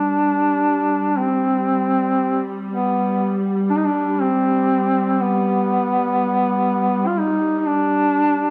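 A mellow duduk and a muted, bowed string section begin together in this short excerpt of a Caucasian folk lament, the strings holding a veiled drone on G3 while the duduk sings a longing, solemn melody in free rubato time. The duduk's vibrato and scooped notes give the line a folk-style, roomy character, and the con sordino strings sit dark beneath it with light vibrato and a soft attack. A moderate recital-hall reverb wraps the whole in a dusky, shadowed production.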